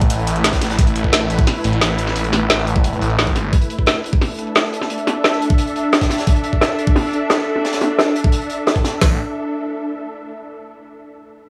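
Mechanical and aggressive, this dark technical drum and bass cut from a longer piece runs at 175 BPM in 4/4. A swarming, tense drone with granular texture, built-in reverb and sidechain pumping holds sustained chords over A5 and D5, while a snarling, growling distorted saw bass sustains on A1 until 3.5 seconds and returns at 9.0 seconds. Two overdriven electronic kits with a knocking kick, woody snare and bright hats sit up front, layered over a gritty, high-tuned acoustic breakbeat kit with a rolled-off top, as a filter sweep runs across the drums in a small, lightly reverberant digital room.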